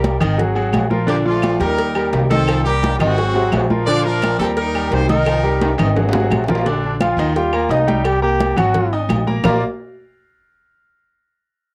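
A straight 4/4 salsa groove at 172 BPM in Bb major drives this sunny, danceable cut from a longer piece, with soft-handed, damped congas, background cowbell and bongos, distant, ringing timbales and agogo bells and woody claves under a thumpy pizzicato upright bass and an up-front baby grand piano with long sustain, while a brilliant, punchy horn section carries the melody until 5.8 s over a very quiet trombone section, a drum fill arrives at 5.6 s, and a bright solo trombone with light vibrato takes the tune from 6.9 s, the horns, piano and solo trombone each tinted by cassette tape in a home recording with gentle reverb.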